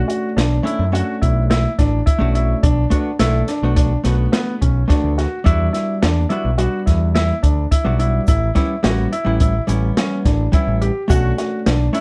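A dark, lightly reverberant production frames this short section cut from a longer progressive instrumental, which moves in an uneven 5/4 with a straight, driving feel and an intricate mood. Up front, an overdriven, picked electric bass sits low in its register alongside an acoustic jazz kit heard in a small room, with a boomy kick, a medium-tuned snare, hi-hat and a smooth, rolled-off top. A clean, compressed hollow-body jazz guitar, played with the fingers, supplies accompaniment in the middle register, while a polished, present baby grand piano spins arpeggios in the same range with a warm tone. At 8.3 seconds a grainy, bright egg shaker joins in the background and drops out again at 11.4 seconds. The harmony moves from Bm7 to Em7 and A7 before returning to Bm7.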